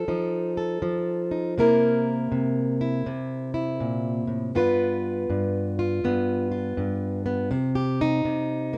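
A fingerpicked, plugged-in jumbo steel-string acoustic guitar sits up front with a dark, full-bodied tone in this short, soulful and rollicking acoustic country blues fragment at 81 BPM in 4/4 with a swung feel, moving through F7, C7 and G7 under light reverb before a brief solo turn from 7.5 seconds to the close at 8.8 seconds.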